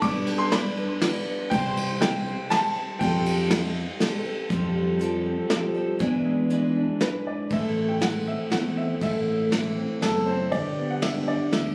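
A clear, woody upright piano carries the melody in this nostalgic, hopeful indie folk excerpt, its natural tone trailed by an analog delay. It steps away at 4.0 seconds and returns at 7.0 seconds, while a shimmering, octave-doubled twelve-string acoustic guitar picks a boxy accompaniment throughout. A punchy, amped electric bass played with the fingers holds down the low end beneath a vintage brush kit that sits up front with dark cymbals, a medium-tuned snare and a rolled-off top. At 4.5 seconds a full-bodied, fingerpicked jumbo steel-string acoustic guitar, plugged in, joins to thicken the building arrangement in a straight three-beat pulse. Light reverb and club ambience surround the band, and the phone-in-the-room capture adds compression and lossy artefacts for an intimate, slightly worn sound.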